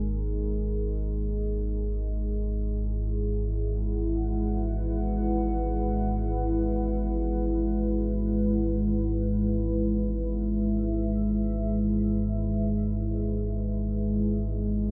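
Free-time dark ambient drone, unsettling and desolate, in which a deep, ominous rumbling drone sits up front beneath a moody, full-bodied pad of detuned sawtooth and sine layers with a sub octave and chorus that holds a sustained Eadd9/G# chord from 1.0 seconds, the mix bathed in a huge, wet reverb with a dark, muffled top in this passage cut from a longer piece tuned to A4 = 442 Hz.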